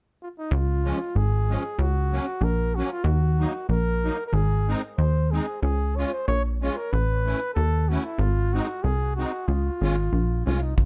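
Alpine folk dance-band music in a festive, jolly mood, this excerpt opens with a mellow, smooth-topped flugelhorn carrying the melody in a classical style, touched with tape echo, while a punchy, plucky analog bass with a fast-attack, decaying, ring-modulated sawtooth bite sits up front underneath. A reedy, shimmering musette accordion adds accompaniment, and an acoustic kick drum lands only at 10.8 seconds. The sound is dry and close, with a brief chromatic turn to an A chord before resolving home.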